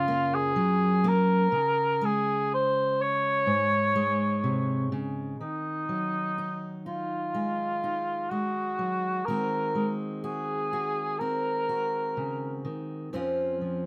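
Close, detailed microphones and a light reverb give this acoustic folk-pop ballad excerpt a tender, intimate sound. A mellow cor anglais carries the melody in a classical style with light vibrato and a roomy, slightly distant quality. A bright, full-bodied fingerpicked steel-string guitar with fresh strings accompanies it through gentle major-seventh and minor harmonies, and the guitar carries on alone from 12.6 seconds to settle on a Dbmaj7/F chord.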